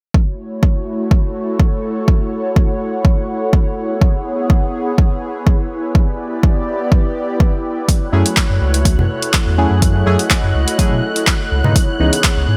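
An overdriven, punchy electronic kick drives this smooth, late-night deep house excerpt from its opening, sitting dry and up front at 124 BPM in F# minor with a light swing on the sixteenths. Around it, a breathy, slightly nasal pad holds sustained chords through F#m7, C#m7 and Em7, soon joined at 1.4 seconds by a higher, ethereal pad whose unison detuning, phaser and built-in reverb give it a shimmering haze; both breathe with sidechain pumping. At 7.9 seconds the groove fills out as a punchy analog drum machine adds overdriven handclaps and hi-hat, and a silky vintage string machine sustains a single high note behind everything. Moments later a deep, round sine sub bass anchors the low end, while rounded sawtooth keys play decaying stabs colored by filter sweeps, chorus, phaser and tape echo. Congas tucked into a small room add a warm acoustic layer in the background before the passage returns to C#m7 near its close.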